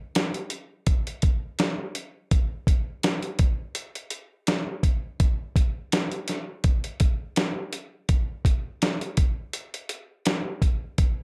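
A gritty, compressed sound with light reverb carries this nostalgic, sunny indie pop excerpt at 83 BPM in 4/4 with a gentle 16th-note swing, where a dusty soul sampler-style drum kit, re-recorded in a large room and sitting up front, plays hi-hat, a thumpy kick and a medium-tuned snare from 0.2 to 11.2 seconds.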